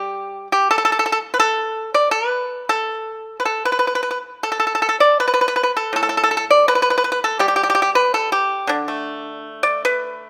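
Flowing and elegant, this 10.3-second excerpt of Chinese traditional solo plucked-string music features a lone pipa, played with fingerpicks and sitting up front, whose dry, percussive attack and acoustic body span A2 to D5 in a rubato 2/4 around 76-86 BPM, tuned to A4 = 442 Hz, within a light reverb.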